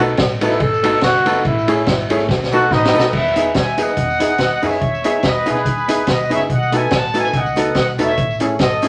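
A bright, roomy trombone leads this cheerful, bouncy ska excerpt, playing a pop-style solo from 0.4 to 3.1 seconds at a brisk 143 BPM in 4/4 with a light swing on the eighths. A mellow horn section with soft attacks and vibrato enters at 2.7 seconds and carries the melody to the end. Underneath, a dark, clean, compressed hollow-body jazz guitar and a brilliant, worn, slightly detuned upright piano supply accompaniment and stabs over chords moving between B7, Amaj7 and Emaj7 in E major. A woody pizzicato upright bass anchors the low end, while a faint, jingly tambourine sits close and dry. The street-band drum kit is up front, with a high-tuned snare, boomy kick, dark cymbals, a rolled-off top and tape echo, and a drum fill leads into the second section. A wet studio ambience wraps the whole ensemble.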